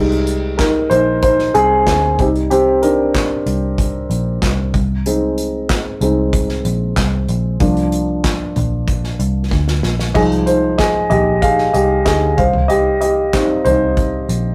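A straight 4/4 pulse at 94 BPM drives this dramatic, bittersweet piano-driven pop excerpt in C minor, where a woody, up-front upright piano takes a solo across the whole passage over chords moving from Bb13sus4 through Cm, Ab/C, Bb and Fm7 back to Cm. Underneath, a vintage foam-muted picked electric bass adds a dark, round, amped low end, while an acoustic drum kit played with bundle sticks mixes handclaps, hi-hat, punchy kick, snare, toms and dark splash cymbal, with a fill from 9.5 to 10.2 seconds. Light reverb and tube saturation give it the rough feel of a rehearsal-room recording.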